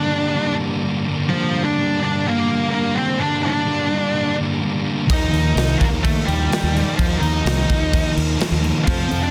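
A dark, octave-fuzzed lead guitar carries the melody from the first moment, over a thick, up-front fuzz guitar riff and a very quiet tonewheel organ holding sustained chords with the shimmer of a slow rotary speaker. This is angsty, cathartic quiet-loud alternative rock in a straight 4/4 at 127 BPM, moving from Gm7 to Ebsus2 in this short excerpt cut from a longer piece. At 5.1 seconds the band comes in: a growly, overdriven fingered electric bass, a second, very quiet fuzz guitar adding a riff of its own, and a big acoustic rock kit with punchy kick, medium-tuned snare and crash cymbals ringing in a large room. The organ's lightly overdriven, shouting tone sits far beneath the distorted guitars, which dominate the front of the mix. A touch of studio reverb gives some space, and the dense, heavily limited modern master keeps the whole passage pressing hard until it cuts off at 9.3 seconds.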